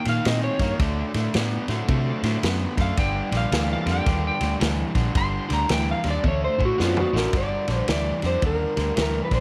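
Smoky and mournful, this short cut from a longer electric blues shuffle moves at 110 BPM in 4/4 with a swung eighth-note feel in G minor. An electric slide guitar with a dark, slightly broken-up tone carries the melody as a solo from the opening through 7.3 seconds, riding over chords that move from Eb7 and D7#9 to Gm9. Beneath it, an overdriven, compressed electric guitar plays a low riff, while a round, foam-muted vintage electric bass holds down the bottom. A vintage drum kit sits up front with a punchy kick, dark cymbals and a rolled-off top, and it plays a drum fill from 6.2 to 7.3 seconds before the harmony settles on Gm. A bright, shouting tonewheel organ with chorus vibrato and a slow rotary speaker fills in from the background between 1.7 and 7.1 seconds, and the whole recording is dry, with little reverb.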